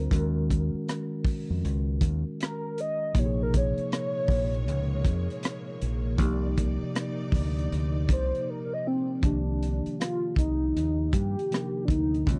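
A velvety, chorused synth lead carries a soft, introspective solo through this soulful neo-soul R&B excerpt, set over a mellow tine electric piano, a deep, round fingered dub bass and a crunchy, gritty breakbeat kit with a tight kick and rim clicks, while a lush bowed string section adds sustained chords from 3.2 to 9.2 seconds in a dry, close 1970s-style studio recording.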